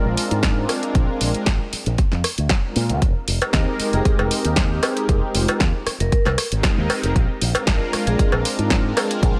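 This groovy, sensual nu-disco cut opens on a smooth, detuned sawtooth pad with a soft attack and a moving notch, its sustained chords carrying chorus, vintage 12-bit sampler grit and digital delay as they move from Bb9 to Fm11 and back. Within the first second a fingered electric bass arrives, electric and direct through its envelope filter. Alongside it comes an up-front, layered electronic house kit: a punchy kick, a snare, rim click and bright hi-hats. Around 3.4 seconds an acoustic cowbell joins, close and dry, and at 3.9 seconds a vibraphone struck with medium hard mallets adds a metallic, ringing melody with medium motor vibrato and delay, sitting in the background. The whole fragment, cut from a longer piece, sits in a digital ambience and holds a single groove throughout.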